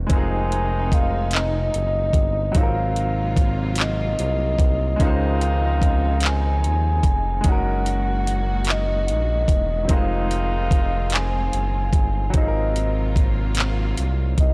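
An up-front electronic R&B drum kit drives this sensual, intimate slow six-eight groove at 49 BPM, its knocking kick, metallic hi-hat and handclaps carrying a tape-tinged character. Underneath, a smooth sawtooth synth bass with transformer saturation sits close to the front, while a clear baby grand piano plays accompaniment in the background, its action noise audible. A soft, round, octave-layered synth lead carries the melody, colored by chorus, tremolo and vibrato. A rich bowed string section holds sustained chords, and a dark, distant horn section adds stabs until 11.9 s. The harmony moves through Fm7, Ab13, Dbmaj9 and Gb69 before returning to Fm7 and Ab13. The whole passage has a dry, gritty cassette sound in a small room, and this 14.5-second excerpt is cut from a longer piece.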